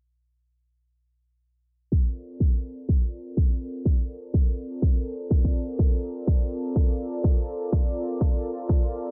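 A punchy, up-front electronic kick drives this sunny, soulful deep house fragment in Bb major at 124 BPM, with a 58% swing on the 16ths, entering at 1.9 s and stopping at 8.8 s while a very quiet electronic hi-hat runs to 9.1 s. Alongside them, a warm, smooth sawtooth pad with a soft attack and long release holds a sustained Bbmaj9 chord, thickened by chorus and pumping against sidechain compression. The dry, gritty cassette sound, low-pass filtered and carrying little reverb, has a filter sweep across the whole passage.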